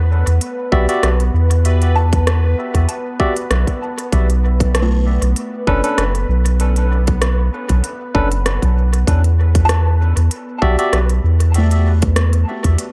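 An echo-heavy, lightly reverberant mix opens this meditative, spacious ambient dub excerpt with a round, up-front sub bass and a bubbling, detuned sawtooth texture with chorus and random resonant filter steps; a tight overdriven electronic kick and crisp overdriven hi-hat and rim click from an organic electronic kit arrive by 0.7 s alongside barky tine electric piano stabs carrying dub echo, and from 2.0 s a buzzing, woody kalimba plays hollow, echoing arpeggios.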